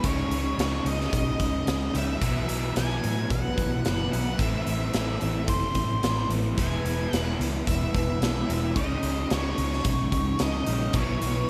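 A big rock drum kit sits up front in this short, wistful and blissful slice of shoegaze and dream pop rock, its punchy kick, medium-tuned snare and hi-hat set in a bright stone room. Beneath it, a vintage foam-muted fingered bass gives round, amped low notes in a straight 4/4. Two overdriven electric guitars play riffs in the background: one dark with subtle chorus, the other a raw garage tone with reverse reverb. Above them, an octave-fuzz lead guitar carries the melody through distortion and analog delay, while a very quiet fingerpicked twelve-string acoustic adds shimmering, boxy parlour arpeggios complete with finger squeak. The harmony moves through C#sus2, Bsus4, Amadd9 and E before circling back, all held in a light reverb.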